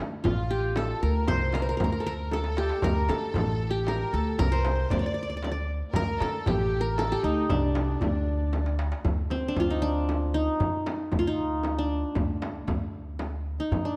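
A bright-edged qanun, plucked with fingerpicks, carries the melody up front in this longing, soulful Arabic maqam ensemble piece in D maqam kurd, moving at 116 BPM in 3/4 over a woody, pizzicato upright bass. A lush, bowed violin section in the background and a very quiet, reedy accordion carry a second line, dropping out before the closing section. A crisp, metal-shell darbuka and a small, hard-handed frame drum play throughout, with drum fills at 2.3 and 8.5 seconds, all within a dark mix with light reverb.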